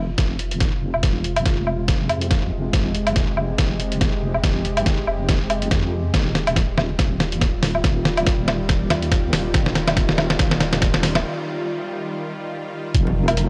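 Deep dubstep in a brooding, meditative half-time swing, this excerpt sets a muffled, pitched-down sampler kick and a trip hop drum kit with an up-front snare, hi-hat and woodblock over a deep, soft wobble bass thickened by chorus and tube saturation, while a nasal, string-like bowed drone with vibrato carries sustained chords from Fm to Ebadd9 under a filter sweep. A drum fill runs until a break at 11.2 seconds, and the build-up resolves on an F5 chord at 12.9 seconds. Moments later, ringing congas enter in the background, followed by a very quiet electronic impact and an airy, breathy wind-like tuned noise texture in the final moments. The dry, gritty recording carries a light digital ambience.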